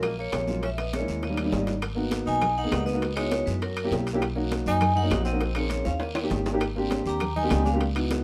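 Driving and sultry, this Afro-Cuban jazz passage in G# minor runs at a brisk 201 BPM in straight 4/4, with a bright, ringing vibraphone carrying the melody over a breathy tenor saxophone second line full of scooped notes and vibrato. A dark, boxy upright piano with audible action noise comps through rich extended chords, while a woody pizzicato upright bass sits up front. Quiet, high-tuned congas and tight bongos, metal-shelled timbales, dry claves and a raspy guiro fill out the percussion under light reverb, with drum fills at 0.6 and 5.4 seconds in this section cut from a longer piece.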